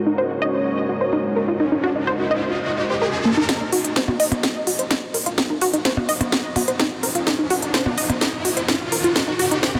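Melodic techno with a cinematic, dramatic mood, this excerpt from a longer piece opens on a deep, moody analog pad holding sustained chords, its detuned sawtooth and sub-octave tone softened by chorus and a slow attack and pulsing with sidechain pumping. A lush, full-bodied unison pluck sits up front, spinning detuned, wave-folded arpeggios that decay into a diffuse ambient delay. An electronic riser joins at 1.0 seconds and climbs through the opening as the harmony rests on Gbadd9. At 3.5 seconds the music shifts to Ebmadd9 and a build-up begins: a filter sweep moves across the pad, and a techno drum kit with a cracking snare, smooth hats and percussion blips arrives up front with a drum fill. A punchy, layered electronic kick enters alongside it, sitting in the background. The whole mix is soaked in a huge, dreamy reverb that gives it a vast, enveloping glow.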